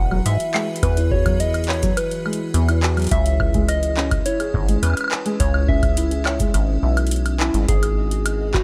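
Rubbery, saturated acid bass sits up front in this eerie, intricate IDM excerpt, carrying a dry mix where a round FM synth lead with chorus and delay sings over a crystalline pad with sidechain pumping, felt-muted upright piano arpeggios with audible action noise and dub echo, a booming analog drum machine of handclaps, metallic hats, shaker and woodblock, and a tape-warm electronic kick that drops out from 6.5 to 7.7 seconds before a detuned, pulsing gated texture enters in the background at 7.7 seconds, as chords move from Eadd9 through C#m to G#m7.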